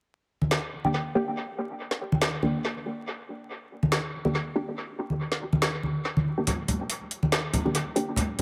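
Dark and cavernous, this short deep dubstep excerpt sits at 141 BPM in 4/4 with a half-time feel and a 56% swing on the sixteenths, holding on G minor throughout. Congas enter first at 0.4 s, their hard-handed, acoustic tone captured in a small room and set up front with dub echo trailing behind. A garage drum kit follows at 0.5 s, layering a woody snare and metallic hi-hats into an electronic, overdriven sound that also carries dub echo. From 0.8 s a filtered dub chord stab spans Bb3 to G4, its detuned sawtooth voice muted and mellow, with a fast attack, short decay, filter pluck and moving notch, colored by phaser, lush chorus, 12-bit sampler grit and dub echo. A moderate spring reverb and digital ambience open up the echo-heavy mix, while vinyl crackle adds a dusty surface.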